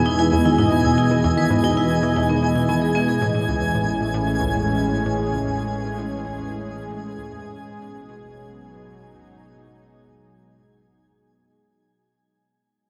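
This short ambient excerpt opens with a lush, thick unison pad sustaining chords up front, while a hard-mallet vibraphone rings out metallic arpeggios through tape echo until 3.2 seconds. Underneath, a round analog pluck plays a riff in the background with chorus and tape echo, and an evolving sawtooth drone holds the bass low in the mix. High above, a twinkling granular texture sparkles on a single note with an octave-up shimmer and its own reverb. At a steady 114 BPM in 4/4 with a straight feel, the harmony moves from Emaj7 to Amaj7 at 3.2 seconds and G#m7 at 7.4 seconds, giving an expansive, cosmic mood. The whole piece sits in a huge, wet ambient reverb with a 7.6-second decay, and the drone, the pluck riff and the overall mix fade out across the passage.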